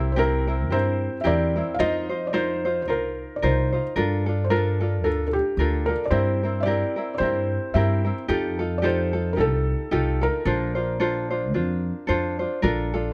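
Hawaiian music with a languid, sunny mood and a lilting swing, heard as a short cut from a longer piece. A felt-muted upright piano carries the melody in a soft, intimate voice with short sustain and audible action noise, stopping at 12.1 seconds, while a light, fingerpicked tenor ukulele supplies the accompaniment and a woody, thumpy pizzicato upright bass on gut strings holds down the bass line, both sitting up front. Close, detailed microphones and light reverb frame the chords as they move from C7 through Gm9 and F9 to a closing Bbmaj7.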